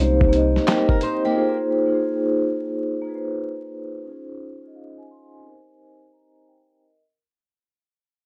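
A mellow, soft-mallet vibraphone with slow motor vibrato and cassette-tape haze opens this nostalgic, dreamy lo-fi hip hop excerpt at 88 BPM alongside a round sine sub bass that drops away by 0.6 seconds, while a gritty, compressed sampler-style kit with thumpy kick, snare, hi-hat and handclaps sits up front from 0.2 seconds, a fingerpicked flamenco guitar with fresh strings adds a faint delayed second line from 0.7 seconds, and the ringing, band-limited vibraphone carries on through a filter sweep and fade-out over swung Cm7, Ab69 and Dbmaj9 chords beneath light reverb and vinyl crackle.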